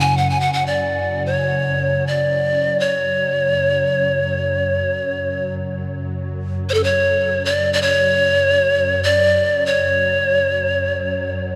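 A breathy pan flute, a quartz singing bowl and an ethereal pad all sound from the first moment of this haunting, spacious excerpt of free-time world meditation music. Up front, the bamboo-toned flute carries the melody between A4 and G#5 with vibrato, a soft chiffing attack and an unsteady, bright edge, trailed by a diffuse ambient delay, while the airy pad holds a mellow, detuned F#2 drone with ensemble chorus, tremolo and its own reverb. Behind them, the close, dry singing bowl rings purely on C#3 with slow beating until 7.4 s, and a cathedral reverb washes over the whole space.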